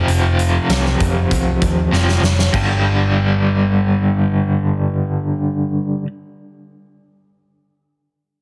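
An overdriven, double-tracked semi-hollow guitar and a dark, round short-scale electric bass open this aggressive, driving hard rock fragment at 98 BPM. The bright, picked guitar riff sits up front with tremolo, moving from an F5 chord to G5 at 2.5 seconds. A huge arena kit with a punchy kick, medium-tuned snare, hi-hat and crash rings out in a big, natural room, playing a fill from 1.9 seconds before dropping out at 2.7 seconds, all in a dry, heavily compressed radio-style mix.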